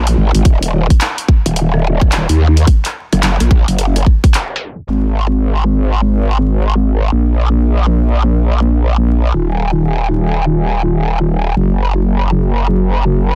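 A dense, heavily limited master with vinyl crackle and very little reverb gives this short glitch hop excerpt a dry, gritty surface and a funky, swung sixteenth-note feel in 4/4. Sitting up front throughout is a growling, aggressive bass: a detuned, saturated sine tone shaped by a formant filter and chorus into a wobbling, compressed line with a fast attack and sustained notes. Beneath it, an electronic drum kit re-recorded in a small room adds handclaps, rim clicks and bright hi-hats, while a tight, layered electronic kick punches forward in the mix. At 4.3 seconds the kick falls away as a tape stop drags the groove down, and from 4.9 seconds the rest of the kit drops out as well, leaving the bass to carry the remainder of the clip by itself.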